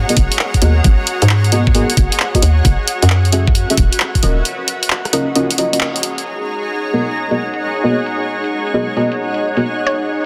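A dense, heavily limited modern mix with light reverb carries this skippy, moody two-step garage excerpt in G# minor at 133 BPM, swung on the sixteenths and moving through G#m9, F#m9 and D#m9. A hollow, bouncy FM bass sits up front until about 4.4 seconds alongside an overdriven, knocking electronic kick that drops out at 4.2 seconds, while a tape-warm analog drum machine plays handclaps, filtered hi-hats and rim clicks, and deep, detuned chord stabs with chorus, phaser and tape echo punctuate throughout. Behind them, a silky, phased string machine and a cloudy, evolving granular pad breathe with sidechain pumping through a break from 4.5 seconds, and a woody, mallet-like synth pluck sounds a single C#5 at 9.9 seconds.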